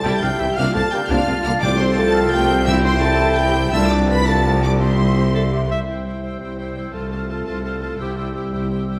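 In a 6/8 at 114 beats per minute, this triumphant, adventurous cue from a heroic film score unfolds in C major over a steady C pedal in the cellos, rich double basses and a very quiet tuba, the tuba dropping out at 5.7 seconds. High above, an intense, distant violin section carries the melody with lush vibrato. It is shaded by a second violin line, a mellow, hollow flute ensemble in the background and a warm, distant oboe that gives way to a close-miked solo clarinet entering at 5.3 seconds. Violas supply a very quiet, focused accompaniment, while French horns and, from 0.4 seconds, a soft trombone section hold sustained chords moving through Bb/C, F/C and Dm/C. A ringing concert harp spreads arpeggios across the texture, and timpani sound quietly on C in two brief passages. The whole ensemble sits in a wet scoring-stage reverb, and the passage is cut from a longer piece.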